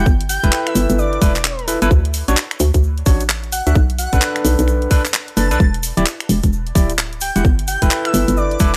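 A dry mix carries this bouncy, late-night two-step UK garage groove at 130 BPM, swung on the sixteenths and cut from a longer piece. Up front, a tight, layered electronic kick and a hollow, knocking FM bass with a punchy, fast attack drive the beat, while a garage kit of finger snaps, handclaps and warm hi-hats sits in studio reverb and a grainy tube shaker stays in the background. Gritty, overdriven tine electric piano stabs through a combo amp, trailed by dub echo, move through G69, Dmaj7, Bm7 and Em7, beneath a soft, dreamy sine-and-triangle lead with a noise layer, sub octave, vibrato, portamento, chorus and dub echo.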